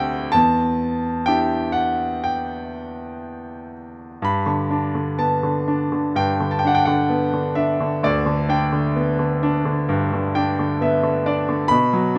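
Dark and wistful, this lyrical classical passage for solo piano unfolds in a free, rubato 4/4, its beats stretching and yielding like a private reflection. A single concert grand carries everything, sitting up front with a bright, brilliant tone over a deep bass that reaches down to D2 and climbs as high as B5. The harmony begins on a shadowed E minor seventh before turning toward G major at 4.2 seconds, bringing a faint lift to the melancholy. Near the close, a brief piano fill from 9.9 to 11.7 seconds adds a small flourish before the phrase ends. Close, detailed microphones and a light reverb keep the instrument intimate and clear, and the passage is cut from a longer piece.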